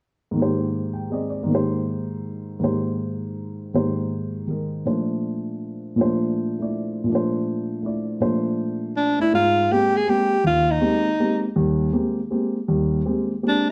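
A swung jazz waltz in three unfolds with an open, spiritual mood, carried from 0.3 seconds by a dark, mellow concert grand piano whose deep bass and short sustain lend a vintage character as it comps through rich major-ninth chords. At 9.0 seconds a breathy alto saxophone enters up front with the melody, its soft attack, light vibrato and smooth top sitting in a narrow register. A wet studio reverb surrounds the pair in this brief fragment of a longer piece.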